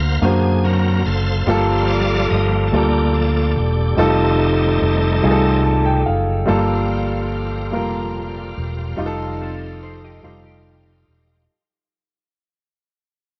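A bright, shouting tonewheel organ leads this soulful, uplifting gospel excerpt in a slow 6/8 at 48 BPM. It takes a solo over sustained chords colored by slow rotary speaker and chorus vibrato until 6.5 s, moving through D7alt, Gm9 and F9 in a moderate echo-chamber reverb. A woody upright piano accompanies up front alongside a round, punchy fingered electric bass, with a piano fill at 5.2 s. As the music fades out, a dark, clean electric guitar with analog chorus enters softly at 9.4 s with a second line.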